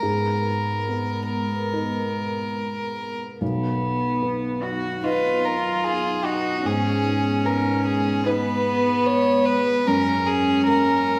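Melancholic and longing, this neoclassical piano-and-strings excerpt moves at 73 BPM in G# dorian with a rubato, unevenly breathing 4/4 feel, its chords drifting from G#madd9 through B and G#m to F#add9. A single violin carries the melody up front with a pure, floating tone played sul tasto, while one cello traces a soft-attacked second line beneath it, and a felt-muted upright piano supplies mellow, intimate accompaniment with a thick, dark touch. Underneath, a deep, moody analog pad of sawtooth and triangle with a sub octave holds slow-attack chords coloured by chorus and phaser, all set in the wet reverb of a recital hall.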